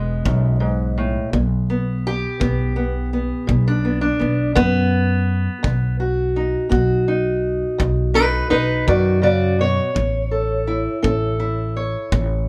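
A dark, boxy parlour steel-string guitar, fingerpicked and up front, carries the melody in this swaggering, laid-back acoustic country blues excerpt in a straight 12/8. A woody pizzicato upright bass sits just as close beside it, while a tight kick drum played with brushes enters at 0.3 seconds, distant and roomy in the background. Light reverb rounds out the trio's short passage.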